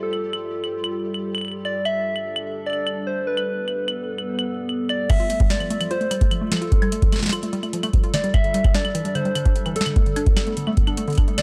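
A round, keys-like FM synth lead carries the melody through this wistful, intricate IDM excerpt, floating over a detuned, nostalgic pad and a very quiet pulsing gated texture that stops at 5.1 s. A booming analog drum machine supplies crisp snare, metallic hi-hats, claves and crash cymbal. At 5.1 s a dusty, mellow pluck joins with arpeggios alongside a deep, up-front electronic kick drum, all set in a dark production with light reverb.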